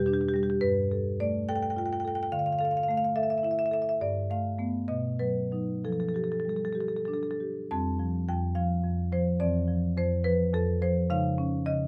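This is a contemporary classical piece for solo marimba, brief and playful, drawn from a longer work. The single marimba, struck with medium mallets, sounds dark and smooth and sits up front, ranging from E2 up to A5, with a light reverb around it. The music moves in a lilting 6/8 with a rubato feel that lets phrases stretch and relax. Its harmony drifts through rich chords such as Em7, G9 and Dmadd9 before settling on F69 at 5.8 seconds. A new passage begins at 7.7 seconds on Fadd9 and slips through Dm9/F to a surprising Dbadd9 at 11.1 seconds, where the fragment breaks off.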